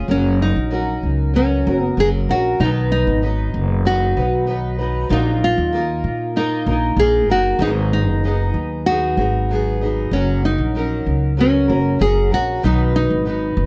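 A straight 4/4 pulse at 96 BPM carries this heartfelt, carefree acoustic pop excerpt in F# major, anchored by a woody, thumpy pizzicato upright bass with gut strings sitting up front. A dark, double-tracked fingerpicked steel-string guitar fills in the accompaniment while a full-bodied, fingerpicked nylon-string guitar carries the melody from 0.1 seconds, its tone given a touch of tape echo. Light reverb surrounds the parts as the harmony moves through F#, B, D#madd9/A# and G#m7 before returning to F# and B.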